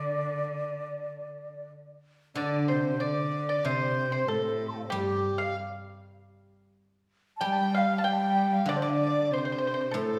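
Graceful and wistful, this Chinese traditional chamber piece drifts in rubato at 94 BPM in D yu mode: a breathy, up-front xiao with vibrato carries the melody over a warm bowed cello with portamento, a dry, percussive pipa and a ringing, silvery guzheng plucked with fingerpicks, while a pure, mellow large dizi with a buzzing membrane and crisp chiff joins at 2.4 s, the ensemble heard in the reverberant bloom of a recital hall.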